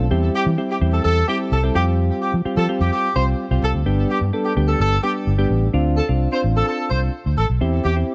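A straight 4/4 pulse at 128 BPM drives this carefree, summery dance-pop excerpt, cut from a longer piece. A vintage muted fingered electric bass sits up front from the start, its tone dark, round and amped, anchoring the low end. Soft electric-piano-like synth keys supply the accompaniment, their mellow, sine-like sound given a gentle shimmer by chorus and tremolo, with a filter sweep and quick, decaying notes. From 0.3 seconds a horn section carries the melody in a jazz style, its warm ensemble sound touched with light vibrato and a trail of digital delay. The harmony moves through C/E, Fsus2 and G before shifting to Dm7 at 5.7 seconds and returning to C/E, all set in a studio reverb.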